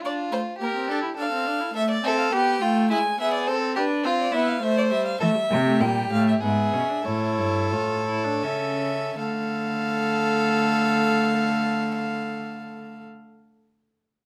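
In a lightly reverberant sound with gut-string, period-style tone, this solemn yet driving baroque-style fugue for string quartet in D minor, in 3/4 at 76-106 BPM and cut from a longer piece, sets a close, nasal, airy-bowed first violin on the melody above a second violin with light vibrato and a reedy viola accompaniment, until a dark, smooth-topped cello bass enters at 5.2 seconds as the tempo slows from 4.3 to 9.2 seconds.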